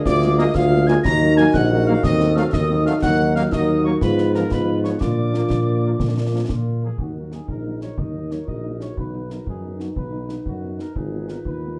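Resolute and stern, this military-style march for wind band moves at 121 BPM in a straight 6/8, set in Eb minor and heard as a short cut from a longer piece. A dark trumpet section carries the melody with a light vibrato and a smooth, tight top, while a distant, roomy tuba sits up front on the bass line. The euphonium, piccolo and woodwind section each add second lines: the euphonium in the background, the woodwind section close-miked and tight, and the pure piccolo mellow with lifted highs and a crisp attack until it drops out at 6.4 seconds. A very quiet French horn section supplies mellow accompaniment, and a soft-attacked trombone section holds sustained chords from 0.4 to 6.9 seconds. Concert snare drum, concert bass drum and clash cymbals with dark cymbals sound close and dry beneath the ensemble, all within a moderate large-studio reverb and a dark production. Harmony turns through Ebm, Ebdim7 and Bb before the second section, from 7.0 seconds, shifts through Ebm, B and Abm.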